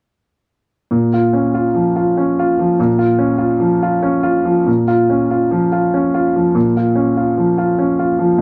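Neoclassical minimalist piano with an intimate, reflective mood, this short fragment of a longer piece moves in a three-beat metre played with a free, rubato feel. A concert grand piano plays solo from 0.9 to 8.4 seconds, staying within its lower and middle registers. Its tone is clear and open, with a deep bass, and it sits up front in the mix. The passage falls into two sections, with the second beginning at 4.7 seconds. Light reverb and a dark, warm production give the performance a close, intimate atmosphere.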